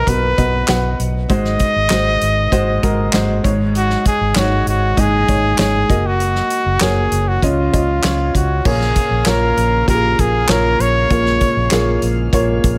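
Piano-driven pop at 98 BPM with an anthemic, warm mood, this excerpt features a clear, close-miked trumpet with light vibrato carrying the melody over a woody upright piano with audible action noise, a dark, round, foam-muted fingered electric bass, and a country drum kit with a punchy kick, a fat snare, handclaps, hi-hat and crash, while a gritty, overdriven tonewheel organ with key click and slow rotary speaker slips into the background at 8.6 seconds as the harmony moves from B through G#7 and C#sus2/G# to A#m.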